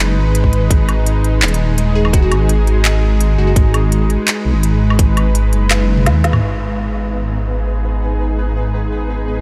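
Half-time drum and bass at 168 BPM in G# minor, heavy and dark, this short cut from a longer piece sits on a G#m chord in a dreamy mix soaked in a huge ambient reverb. A deep, rumbling detuned saw bass sits up front beneath a tense, nasal bowed-like drone with sidechain pumping, while a tight layered kick and an organic electronic kit with a woody snare, crisp hats, handclaps, toms and woodblock drive the groove. A faint crystalline pluck with chorus and analog delay appears at 2.0 seconds, the kick drops out under a drum fill at 5.7 seconds, and a pulsing gated texture enters at 7.1 seconds after the drums have fallen away.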